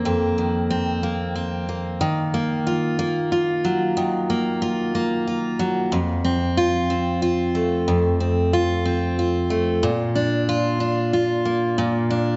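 Pop in a tender, romantic mood, this excerpt features a lone picked steel-string acoustic guitar, bright and full-bodied with a jumbo presence, sitting up front with tape echo at 61 BPM in a straight 6/8. It moves through F7sus4 and Ebmadd9 before settling onto F and Bb by 9.8 seconds. A wet concert hall reverb surrounds the guitar, and the recording's top end is rolled off, giving the sound a soft, hazy ceiling.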